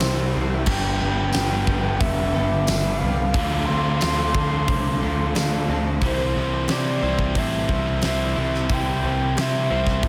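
Shoegaze and dream pop rock, wistful and hazy, cut from a longer piece: a breathy, flute-like synth lead with warbling vibrato carries the melody over an up-front overdriven guitar riff washed in reverse reverb, a hollow-body overdriven guitar riff tucked behind it, a very quiet clean guitar picking arpeggios, a punchy fuzz bass, a huge arena drum kit with bright cymbals and a fat snare, a jingly tambourine that stops at 5.5 seconds, and a deep, dark ambient pad of sustained chords that drops out at 6.0 seconds.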